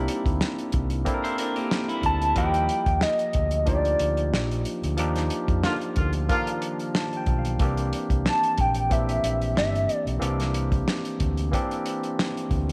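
This short cut from a lush 1970s-style soul piece opens with a barky, lightly overdriven tine electric piano up front, a picked electric guitar riff just at the edge of break-up, and a punchy, amped fingered bass. A tight soul drum kit joins almost at once, with a fat snare, a tight kick and hi-hat, its rolled-off top sitting up front in a pumping little room. The groove moves at 92 BPM in 4/4 with a gentle 16th-note swing, and the mood is silky and smooth over C7 and Ebmaj9 chords. At 2.1 seconds a hollow, woody square-wave lead takes the melody, dark and detuned with chorus and vibrato, and the guitar drops out at 2.8 seconds. A warm horn section adds a brief pop-style stab at 5.6 seconds during a band accent, followed by a short electric piano fill. A moderate plate reverb gives the whole a glossy sheen.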